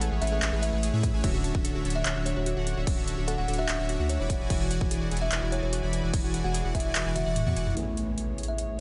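A saturated sub bass sits up front, deep and thick with a fast attack and pumping from the sidechain, beneath a euphoric, bright future bass drop in a half-time feel. A soft supersaw riff sounds smooth, full-bodied and detuned while a woody kalimba melody rings with 12-bit sampler grit and digital delay, and a lush unison pluck adds background arpeggios through the same grit and echo. A very quiet dark string section holds bowed chords with light vibrato, and an overdriven dance kit brings metallic hats, handclaps, toms and crash in a small room. A punchy, overdriven electronic kick drives from 1.0 s and drops out at 7.0 s. A drum fill then leads into a closing turn, where a mellow, vintage-toned grand piano enters at 7.7 s and a background impact arrives at 7.8 s. The harmony moves through lush major-seventh and ninth chords, landing back on its opening chord for this brief fragment of a longer piece.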